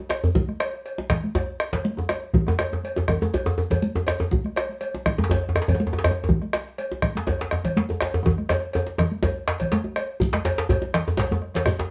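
A West African drum ensemble opens together at a straight 122 BPM in 4/4: a deep, dark bombo up front, a metallic, vintage-sounding cowbell, two cracking djembes (one with metal rattles, also up front) and bright, thin-skinned congas played with soft hands. The mood is earthy and powerful, with close, dry drums set in a moderate studio reverb. A drum fill runs from 8.3 to 10.2 seconds, after which a grainy, mellow shekere joins in the background for the closing bars of this cut from a longer piece.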